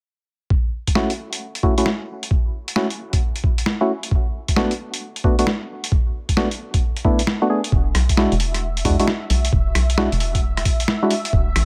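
A skippy, swung two-step garage groove opens this moody excerpt, with a gritty, thumpy, pitched-down electronic kick and a tape-warm sampler kit of hi-hat, rim click and medium-tuned snare sitting compressed and up front in a small room. Dark, percussive organ stabs with chorus and digital delay move through F#m7, Bm7 and E9, and at 7.7 seconds a bouncy, punchy FM bass with a hollow, knocking tone enters. From 8.0 seconds a silky, mellow vintage string machine holds soft chords in the background with ensemble chorus and sidechain pumping, and a barely audible electronic riser slips in at 11.5 seconds.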